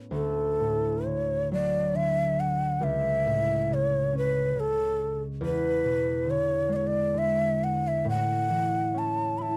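A mellow, ringing concert harp opens this short Celtic slow air in A major, fingerpicked close and up front beneath a breathy bamboo shakuhachi that takes the melody from 0.1 seconds. Drifting in a rubato 3/4 around 68 BPM with uneven beats, the pastoral, nostalgic tune carries vibrato, tongued notes, audible chiff and lifted highs, while the harp moves through D, A/C#, E7 and back to A. The dry, intimate 1970s-style studio sound keeps both instruments in the foreground with little reverb.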